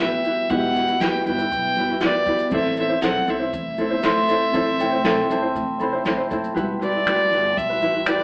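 An up-front bowed violin with a warm gut-string tone and light vibrato opens this reflective, tender acoustic pop excerpt over fingerpicked tenor ukulele, a reedy, worn electric piano with overdrive and fast tremolo, a shimmering ethereal pad that drops out at 6.5 s, a woody pizzicato upright bass and a brushed drum kit with finger snaps and shaker, while a mellow rubber-mallet glockenspiel adds a bell-like second line from 4.0 s, all set in a wet studio reverb with an AM-radio sound heard from further back.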